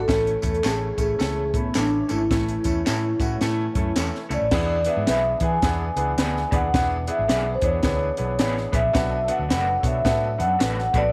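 A mellow vibraphone carries the melody from the opening moment in this uplifting 1960s-style soul piece with a swung feel. It rings with a slow motor vibrato and a boxy small-room character, over a very quiet tonewheel organ holding fat, clean chords with key click and a fast rotary speaker. A dark, foam-muted electric bass with a round, amped tone sits underneath, joined almost at once by a brilliant, intimate baby grand piano whose action noise is audible. The compact cocktail kit is dry and up front, with a punchy kick, a high-tuned snare, dark cymbals and hi-hat, while a vintage, band-limited layer of tambourine, egg shaker and group handclaps adds lift until 4.4 seconds. From 0.6 seconds a slightly broken-up electric guitar through a small old amp adds lo-fi picked stabs with tremolo in the background, as the harmony moves from A to E7 at 4.5 seconds and on to Bm7, all set in light studio reverb in this excerpt from a longer piece.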